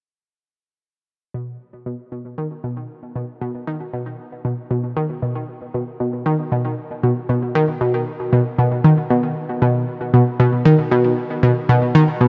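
A straight 4/4 pulse at 116 BPM underpins this ambient fragment in B major, tuned to A4 = 439 Hz, and its mood is expansive and cosmic. The only voice is an analog pluck playing a riff between B2 and D#3, heard from 1.3 to 12.3 seconds. Its arpeggio sound fades in over that span. The tone is round and detuned, built from sawtooth, square and triangle waves with a noise layer, and ring modulation and a filter sweep add motion to its fast-attack, short-decay notes. Chorus and analog delay thicken the bright pluck, which sits up front in the mix. A huge ambient reverb with an 8.0-second tail surrounds it, and the top end stops at 7.7 kHz, giving the piece, which is cut from a longer work, a vast, softened horizon.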